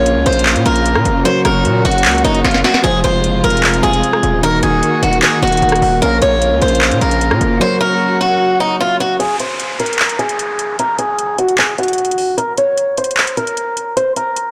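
A bright, boxy picked acoustic guitar with a swing feel carries the melody up front, its tone dulled by a low-pass filter, in this melancholic, eerie trap cut taken from a longer piece. Beneath it, a soft, felt-muted upright piano sits in the background while a dark chamber string section holds bowed chords with light vibrato and a hushed sul tasto touch, all over a minor progression in a half-time feel. A heavy, saturated 808-style bass hits hard with a fast attack and a gritty noise layer, and the electronic trap kit cracks with a sharp snare, metallic hats, rim clicks and handclaps, adding a quick fill just after 2.4 seconds. At 7.6 seconds the bass drops out and the drums are muted, and from 9.2 seconds the piano and strings fall away into a break where the guitar and drums continue under a filter sweep and an electronic downlifter. The whole mix is blown-out and overdriven, set in a small room with light reverb.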